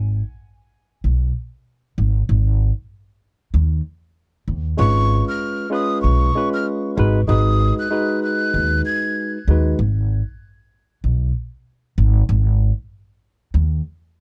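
A plucked upright bass opens this reflective, gritty boom-bap hip-hop excerpt on its own, its woody, thumpy steel-string tone sitting up front over a G# minor chord at 96 BPM in 4/4, with a 16th-note swing and a G# dorian colour. At 4.8 seconds a tine electric piano enters with accompaniment that sounds worn and slightly out of tune, heard through its built-in speakers and shaded by cassette tape and high- and low-pass filtering. A breathy metal jazz flute arrives with it, carrying the melody high in its range with a soft attack, straight tone and lifted highs, its expressive lines trailed by a digital delay and framed by filters. The harmony moves from C#7 over G# to G#m7 before the piano drops out at 9.8 seconds, after the flute has already finished, leaving the bass to carry the closing break until 13.8 seconds. The mix is dark and warm with little reverb, keeping every part close and intimate.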